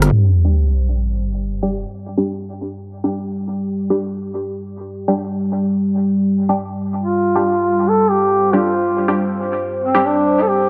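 A mellow duduk carries the folk-style melody from 7.0 seconds, its vibrato and scooped notes sounding distant and roomy through a dub echo. The piece is a meditative, heavy dubstep fragment at 139 BPM in 4/4, with a half-time feel and a gentle swing on the sixteenths. Beneath it, a deep, moody pad of detuned sawtooth and sine layers with a sub octave holds sustained chords, its slow attack and long release softened by chorus and built-in reverb while a filter sweep runs across it. An electronic sub drop lands as an impact at 0.1 seconds. From 0.4 seconds, a muted, filtered dub chord stab adds plucky, decaying pulse-wave hits colored by phaser, subtle chorus and dub echo. The section opens on a G5 chord, with a moderate spring reverb and a dry, gritty hardware character shaded by a low-pass filter.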